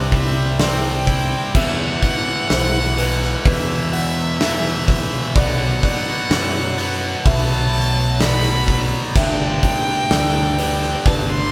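Brooding and cinematic, this post-rock excerpt in E minor at 63 BPM sets a huge, punchy arena drum kit and a growling, overdriven picked bass beneath a bright distorted guitar riff and a rich, airy-bowed violin melody with light vibrato, while a mellow felt-muted upright piano with audible action noise plays arpeggios in the background, an icy, crystalline glass pad holds very quiet sustained chords, and a twangy clean guitar plays arpeggios until it stops at 1.6 s, the band playing live in one room with light reverb through Cadd9, Esus2, Bm7 and Gadd9.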